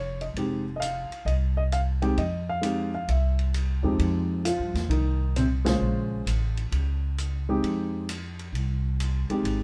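Jazz piano trio in a smoky, swinging F minor at 132 BPM in 4/4 with a swung eighth-note feel, where a mellow, intimate baby grand carries the melody with audible action noise and short sustain over up-front, woody, thumpy pizzicato upright bass, while an open acoustic drum kit enters at 0.2 seconds on hi-hat, shadowy ride cymbal and medium-tuned snare, all moving through Fm9, C and Bbm9 changes under light reverb, with a band accent at 5.6 seconds in this short cut from a longer piece.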